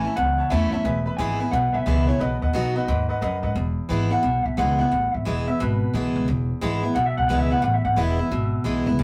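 Upbeat, rollicking rockabilly at 177 BPM in E major with a swung 4/4 feel, heard as a short cut from a longer piece. A twangy, slightly broken-up electric guitar through a small old amp carries the melody. Beneath it sit a full-bodied, up-front steel-string acoustic guitar, a thumpy, woody upright bass, and a brilliant upright piano with audible action noise that drops out at 3.5 seconds. From 3.6 seconds a clean electric guitar solo begins, all set in a rough rehearsal-room sound with moderate reverb and warm saturation.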